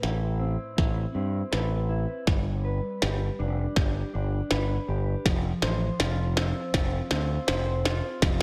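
A dark, clean electric guitar plays arpeggios with tape echo over a punchy, overdriven fingered bass and an up-front electronic drum kit with a deep kick and tiny snare, all at once, in this cinematic, cathartic post-rock cut at 81 BPM, building up through a drum fill across the full 8.4 seconds as the chords move from Amadd9 to G to F5 in a lush hall with a big arena sound.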